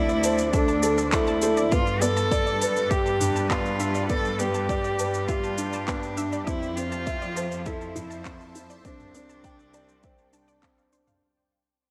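This piano and strings electronica piece opens on a drop, with a solo cello carrying the melody up front, bowed sul tasto with light vibrato and a soft attack. Beneath it a felt-muted upright piano plays a mellow, boxy riff through tape echo. A bowed symphonic cello section holds the bass with a focused, clear tone, tube saturation and sidechain pumping, while a thick, detuned pad of sustained chords sits in the background with chorus, phaser and the same pumping. Almost at once a very quiet, punchy pluck adds arpeggios, and an organic electronic kit, re-recorded in a large room, brings handclaps, shaker and toms; an overdriven, layered electronic kick with a deep body joins at 0.5 s. At 101 BPM in a straight 4/4, the mood is intimate and hypnotic, the harmony moving from D7 with the third omitted through G7 and Fmaj7 to Csus2 under a light reverb. The music fades out from 1.7 s onward, and the cello melody stops at 10.6 s.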